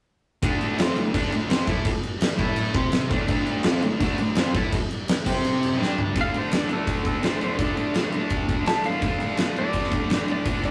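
Garage rock in D minor at 168 BPM, this menacing, gritty excerpt drives a bright, double-tracked fuzz guitar riff over an oversized, low-tuned acoustic drum kit with a fat snare, punchy kick and dark cymbals in a pumping big room, until a drum fill at 5.8 seconds ushers in a clean, twangy lap steel slide melody at 6.2 seconds, captured as a rough rehearsal-room recording with tube saturation and wet studio reverb.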